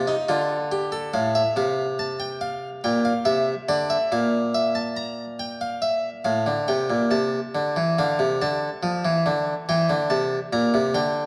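A dark production set in a moderate concert-hall reverb frames this solemn, contemplative excerpt of a baroque-style two-part invention at 70 BPM in 4/4, where a solo harpsichord, close-miked, up front, plucked and nasal with a bright, Italian-style edge, moves from a Bb opening through F/A and Gm colours before settling into D minor at 8.0 s for a brief new section that ends on Em7b5 at 9.7 s.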